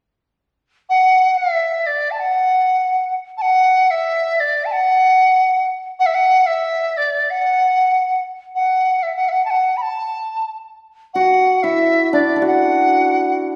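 The rhythm is free and rubato, floating loosely over a 4/4 metre in this short cut from a longer piece of Chinese traditional chamber music. A large dizi carries the melody from 0.9 seconds, its bamboo tone bright and reedy with the buzz of its membrane, shaped by vibrato and tongued notes that sit up front yet carry a distant quality. Near the close, at 11.2 seconds, a hammered dulcimer joins with a mellow, shimmering second line in a lower register, ringing on until 13.6 seconds. The mood is festive with a pastoral air, set in the generous reverb of a recital hall that lends the small ensemble a sense of space.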